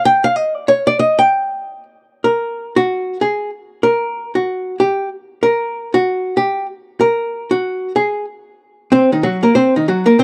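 Swinging in 4/4, this short jazz excerpt features a lone archtop guitar, dark, clean and compressed with a hollow-body tone, picked up front in a dry, close 1970s-style studio sound, playing unaccompanied before landing on a rootless Ab9 chord at 7.0 seconds.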